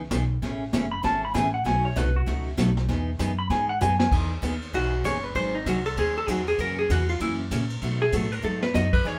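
A woody, thumpy pizzicato upright bass on gut strings opens this playful, down-home slice of western swing, joined almost at once by a picked steel-string acoustic guitar and a vintage brush kit with dark cymbals, a medium-tuned snare and a punchy kick. The swung feel stays easygoing and bright-spirited as the band plays live together in one room with moderate studio reverb. At 0.9 seconds a clean lap steel guitar, dark and up front, takes a sliding, fingered solo over the changes. A drum fill at 3.8 seconds hands off to a vintage hollow-body jazz guitar, which enters at 4.8 seconds with a clean, compressed, up-front melody. The acoustic guitar keeps a warm, auditorium-toned accompaniment underneath, while the smooth, rolled-off brushes give the groove a relaxed, old-time polish in this cut from a longer piece.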